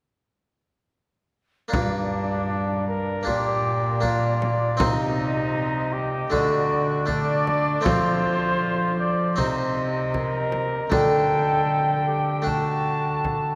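At 1.7 seconds a small consort enters together in a solemn, courtly Renaissance-style dance in G minor, moving at a stately 78 BPM in a straight 4/4. A distant cornet with light vibrato carries the melody, while a soprano recorder above it adds an airy, woody second line, its tongued notes showing a gentle chiff. A bright, plucked harpsichord sits up front with the accompaniment, and a single bowed cello supplies a bass line with a gut-string, reedy period tone. A large frame drum, struck with hard hands, sounds deep, close and dry beneath the ensemble. The harmony moves from G minor through B-flat, C minor, D and F, returns to C minor, and then arrives on a D suspended-fourth chord, all bathed in a cathedral reverb that lingers for 6.0 seconds, and the passage breaks off at 13.6 seconds as a section cut from a longer piece.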